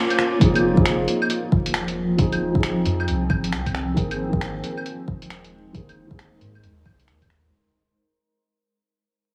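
Wistful and nocturnal, this swung future garage excerpt opens with a brief break and a band accent at 0 seconds, then fades out from 0.4 seconds as a muffled, pitched-down lo-fi sampler-style kit of claves, finger snaps and hi-hat and an up-front, deep electronic kick drum sit beneath a dark, boxy felt-muted upright piano with dub echo, a blurred, evolving granular cloud pad and a round dub sub bass, with the piano, pad and bass pumping from the sidechain inside a lush hall reverb over vinyl crackle.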